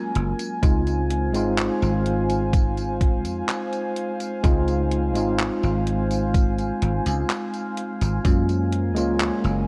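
Vaporwave at a slow 63 BPM in Db major, this faded, dreamy clip is cut from a longer piece and sits in a dark, softly reverberant production. A clean tine electric piano carries the accompaniment up front, bathed in lush chorus and tape echo, while a warbling, nostalgic pad of detuned sawtooth and triangle tones holds sustained chords beneath it with a slow attack, long release, chorus, phaser and its own built-in reverb. From 0.2 seconds a dry thumbed slap bass enters, bright, growly and punchy with tube saturation, sitting up front in the mix. A detuned 8-bit drum machine adds handclaps, hi-hat and tambourine, and a thumpy, tape-warm electronic kick joins at 0.6 seconds and drops out at 8.4 seconds, both drum parts sounding re-recorded in a small room. The harmony moves from Gbmaj9 to a long stretch of Dbmaj7 before returning to Gbmaj9 near the close.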